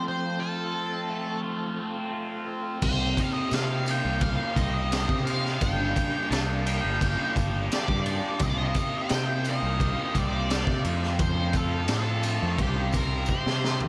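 A fuzzed, dark lead guitar melody with wah and tape echo opens over a bright, double-tracked garage guitar riff soaked in overdrive and phaser and a mellow tonewheel organ holding very quiet chords with key click and fast rotary shimmer, setting a mysterious, trippy psychedelic rock mood at 86 BPM in C dorian. At 2.8 seconds a round, overdriven picked bass and a gritty, punchy small-room drum kit with a high-tuned snare arrive up front, joined by a faint, jingly tambourine, as the chords move through Cm7, Gm and F. The dry, echo-heavy passage closes on a drum fill from 13.3 seconds, cut from a longer piece.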